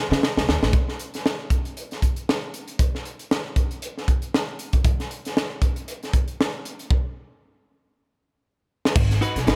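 Sly and cool, this funk excerpt in G# minor moves at 117 BPM with a lightly swung sixteenth feel, as a crisp, gritty fusion drum kit with a high-tuned snare and punchy kick drives the whole 9.6 seconds with fills, a woody, thumpy upright bass appears only at the start and again at 9.0 seconds, and a clean, hollow-toned semi-hollow electric guitar with harmonic tremolo enters at 9.2 seconds on a G#m7, all in a dry, close sound.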